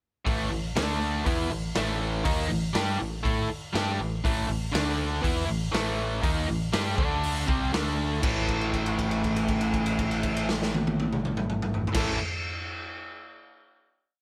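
An overdriven semi-hollow guitar leads this short classic rock piece. Its bright, double-tracked power-chord riff sits up front from 0.2 seconds and moves between A5 and D5, with a brief C5 near the end of the riff. The mood is driving and swaggering, at 120 BPM in a straight 4/4. A fingered electric bass, dark and round through an amp, doubles the guitar riff with a driving eighth-note line, while a raw garage drum kit of kick, snare, hi-hat, toms and crash adds a big rock groove. The up-front kit sounds gritty and saturated in a small, pumping room, with a punchy kick, a medium-tuned snare and dark cymbals under a rolled-off top. At 8.2 seconds the riff gives way to a final A5 chord, held until 11.9 seconds, and the dry recording keeps the guitar and drums close.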